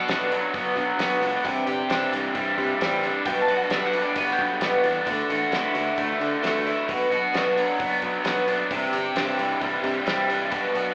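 With an AM-radio tint and a moderate large-studio reverb, this short folk rock and heartland rock excerpt sounds like a band playing live in one room, carrying a warm, open-road mood in a straight 4/4 over chords moving from Bm through Cadd9, Gmaj7/B and Dadd9. Up front, a raw, double-tracked garage guitar drives the riff with overdrive and spring reverb, while a bright, shimmering twelve-string acoustic picks octave-doubled accompaniment beneath it. A dark, damped 70s drum kit with a fat snare and tight kick, plus a background electric bass played direct and amped, anchors the groove, and a bowl-back mandolin adds a brief second line from 3.3 to 4.5 seconds.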